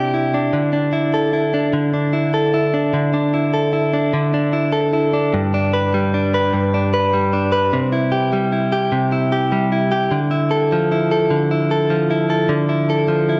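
Pop in a tender, swaying 6/8 at 50 BPM, counted in dotted quarters, this excerpt is a solo clean electric guitar recorded direct, picked and compressed, sitting up front with a warm tone and a touch of spring reverb across a range from G2 to B4. It opens on Cadd9 and Dsus2, then at 5.3 seconds moves into a new section that steps through G, C and Dmadd9. The light room reverb and cassette home recording give it an intimate, homespun character.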